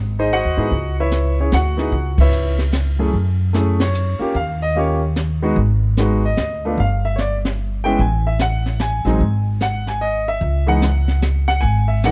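Moody and smoky, this jazz piano trio fragment swings in a lilting three, with a growly, woody pizzicato upright bass opening alone before a clear, open concert grand piano takes the melody at 0.2 seconds and a brushed drum kit with dark cymbals, a high-tuned snare and a boomy kick joins at 0.7 seconds, the whole band landing accents together in a dry, shadowy production.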